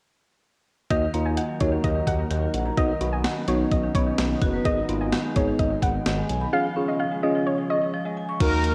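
Opening at 0.9 s with a thumpy, up-front 12-bit drum machine, a smooth sawtooth synth bass, a worn, slightly out-of-tune tine electric piano through phaser, bright marimba arpeggios with tape echo and a soft, round pluck carrying a second line with chorus and tape echo, this melancholic yet driving synth-pop fragment in Eb minor at 128 BPM moves through Ebm, Badd9, Abm and Db as a lush, detuned pad with chorus settles into the background at 1.5 s and a brassy, dark synth brass note on Bb4 arrives at 8.4 s, heard through a moderate plate reverb and the warbling pitch drift of old cassette tape.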